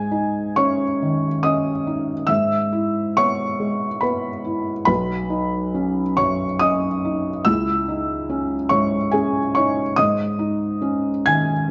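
A felt-muted upright piano plays alone from the first moment, its dark, intimate tone sitting up front with the noise of its action clearly audible. This is melancholic, wistful neoclassical minimalism in C# minor, moving rubato around 70 BPM in 3/4 as the harmony passes from G#sus4 through E/G#, Badd9 and C#madd9 before returning to G#sus4 at 10.0 seconds. A moderate recital-hall reverb gives the mellow sound some air across this 11.7-second fragment cut from a longer piece.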